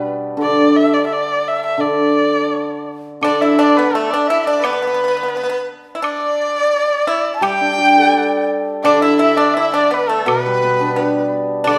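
Graceful and pastoral, this short cut from a longer Chinese traditional chamber piece unfolds in a free, rubato 2/4. A dark, woody erhu carries the melody up front from the start, its single bowed line colored by vibrato and portamento. A shimmering hammered dulcimer rings beneath it as accompaniment, sitting just as close to the listener. At 3.2 s the texture fills out: a bamboo dizi adds a pure, bright second line with a buzzing membrane, tongued notes and expressive vibrato, while a dry, percussive pipa played with fingerpicks joins lower down. A woodblock adds light acoustic accents from the background. Moderate reverb gives the ensemble the bloom of a recital hall, as if heard in a church or concert hall.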